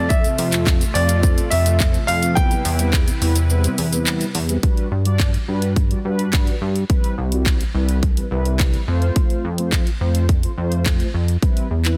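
Carefree, upbeat dance-pop at 106 BPM in G major, where a polished grand piano with tape echo states a brief melody until 4.0 s over dark, brassy synth brass, a smooth supersaw bed that stops at 4.6 s, a glossy pulse-wave synth bass and a punchy, layered electronic kit of kick, handclaps, hi-hat and shaker, with the kick briefly muted before the shift to a Gmaj7 passage and the brass, bass and supersaw all pumping against it in a dense, heavily limited modern mix.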